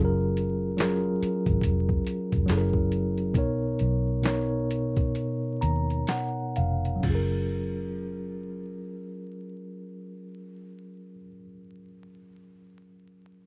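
A dry, close 1970s-style studio sound with vinyl crackle frames this soulful, smooth neo-soul and R&B cut from a longer piece, sitting around 61-72 BPM in F# major with a swung 16th feel that slows down through the first 7.0 seconds. A mellow tine electric piano, clean and up front through its built-in speakers, carries the F#maj9 and Bmaj9 chords and adds a fill from 5.1 seconds while the kick drops out. Alongside it play a dark, round, foam-muted fingered bass and a gritty, pitched-down boom bap sampler-style kit, up front, with thumpy kick, snare, hi-hat, handclaps and crash, and the drums stop at 7.3 seconds.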